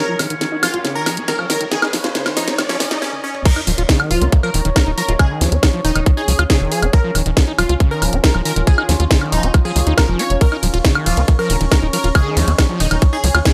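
This intense, psychedelic trance excerpt opens on a build-up in which a bright, detuned supersaw stab melody with phaser and tape echo, a resonant drone of moving overtones, and a squelchy, gritty acid bass riff under a filter sweep sit over a nasal sequencer bass, drum fills from an overdriven techno kit with a cracking snare, a background riser and a very quiet, warbling lo-fi tape-like pad, before a brief break gives way at 3.5 seconds to a drop where an up-front electronic kick arrives, the stab, drone and acid bass pump with sidechain, and a very quiet formant-sweep wobble bass surfaces twice, all in a lightly reverberant mix.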